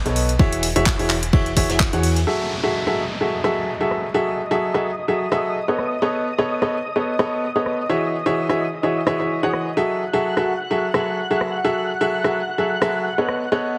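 A swung 4/4 groove at 128 BPM sets up a soulful, bittersweet piano house cut in F# dorian, opening on a punchy, round FM bass, a tape-warm electronic kick and a very quiet, distant brush kit that all drop away by 2.3 seconds, when a silky, bright analog string pad with ensemble chorus and a filter sweep enters beside a brief electronic downlifter, while a clear, woody upright piano riff with audible action noise, tape echo and sidechain pumping carries on over a layered house kit of handclaps, hi-hat and rim click, the whole mix sitting in light reverb with a heavily compressed radio sound.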